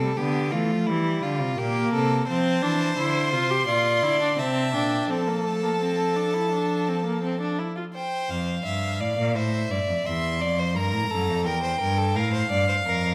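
A close, vibrato-rich violin enters with the melody at 2.3 s in this driving, serious baroque-style string quartet fugue, cut from a longer piece, over a distant, focused second violin, a smooth, even viola that drops out at 7.8 s, and a clear, bowed cello bass, all sounding from the start and set in the reverberant glow of a recital hall.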